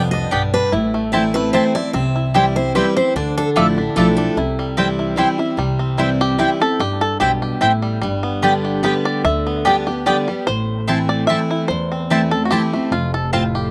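A driving, rustic bluegrass piece in 3/4 at 148 BPM with a light swing opens in C major. A twangy, percussive fingerpicked banjo and a bright, full-bodied picked dreadnought guitar share the melody, both with a slapback echo, over a second up-front dreadnought with fresh strings playing accompaniment and a pizzicato upright bass. Up-front mandolin stabs on double strings, also with slapback echo, quickly join in; the guitar melody drops away at 4.4 s, and the banjo takes a solo from 5.6 s, all in a dry, open-air sound with little reverb.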